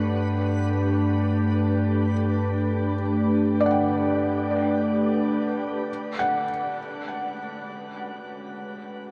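A glassy FM pad sits up front in this serene, weightless ambient excerpt, holding slow-blooming sustained chords touched with ensemble chorus and its own reverb. Above it, a felt-muted upright piano plays soft, intimate arpeggios in a high register, its thin felt and audible action noise set against a tape echo. A round, deep analog bass with a slightly nasal edge holds a low G until 5.8 seconds. A reversed, detuned granular texture swells dreamily in the background and fades out by 5.9 seconds, when the harmony moves from Gmaj7 to G#m7. In free time, the dark production floats in a wet shimmer reverb with a long tail.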